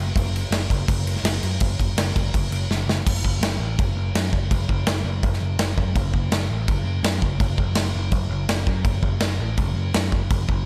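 Aggressive and relentless, this short heavy metal passage is cut from a longer piece and moves in a straight 4/4 feel. An overdriven, picked electric bass opens at 0.0 seconds on its own, its bright, growly, amped tone sitting low in the register. A big acoustic rock drum kit, recorded in a studio room and placed up front, joins at 0.2 seconds with a punchy kick, a medium-tuned snare and crash cymbal. A drum fill from 2.7 to 3.1 seconds leads into the second section, which carries the bass and drums together through to the end. Light reverb gives the mix a touch of room.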